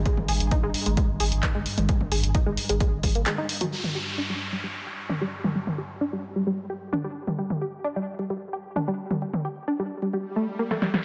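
Industrial and relentless, this driving peak-time techno cut runs at 131 BPM in a straight 4/4, opening with a deep, saturated sub bass, a dry, punchy electronic kick and an eerie, metallic FM drone sitting in the background. The sub bass and kick both stop by 3.3 seconds, leaving the tight, wave-folded sequenced synth riff, up front with chorus, phaser and dub echo, to carry on through a filter sweep over an electronic downlifter and swell. The punchy analog drum machine plays throughout with handclaps, hi-hat, snare and toms, its toms and hats pumping with sidechain, until a drum fill at 10.7 seconds closes this cut from a longer piece.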